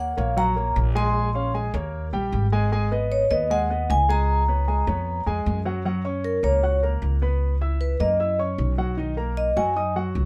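This lively, sophisticated jazz piece opens with vibraphone, upright piano and upright bass together in a straight 4/4 feel. The vibraphone carries the melody with medium mallets, and its metallic, ringing tone is close-miked and dry, colored by a slow motor vibrato. Beneath it, the upright piano plays accompaniment with an intimate, polished sound, and its long sustain and audible action noise give it a woody presence. The pizzicato upright bass sits up front with a thumpy, gut-string tone. The harmony moves through a rootless D#m7, A#m9 and D#7 to G#m7 and C#6 before reaching F# at 5.8 seconds, where the vibraphone takes a solo over chords that include C#m7 and Bmaj7. The vibraphone drops out at 9.9 seconds, and piano and bass carry on under a light reverb until this short fragment of a longer performance ends at 10.3 seconds.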